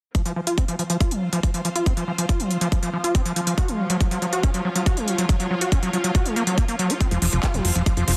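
From 0.1 s, a driving, hypnotic psychedelic trance groove opens with a squelchy, gritty overdriven acid bass riff, distorted and resonant, pumping against the sidechain and trailing dub echo while a filter sweep runs across it. A tight, tape-tinged electronic kick sits up front, joined by a layered dance kit of handclaps and crisp hi-hats. Far behind, a very quiet symphonic string section adds a clear, lush bowed texture with gentle vibrato. At 2.2 s a swarming, warbling drone of detuned unison tones fades in with sustained chords, carrying its own built-in reverb and phaser and breathing with sidechain pumping. Near the end, at 7.1 s, a punchy, funky plucked analog bass lands low and up front, capping this dense, heavily limited cut from a longer piece.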